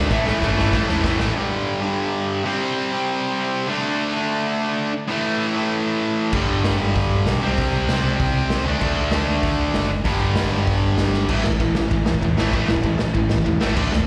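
An energetic, rebellious punk rock fragment cut from a longer piece, where two bright, up-front distorted electric guitars drive a riff with overdrive and slapback echo from start to finish, a very quiet double-tracked overdriven guitar adds a compressed riff only in the opening 1.3 seconds, a growly overdriven picked bass and a raw garage drum kit with a punchy kick, rolled-off top and medium-tuned snare play at the start and return at 6.3 seconds through a half-time stretch with drum fills, all heard as a live gig through the venue's PA in a small room with recital hall reverb.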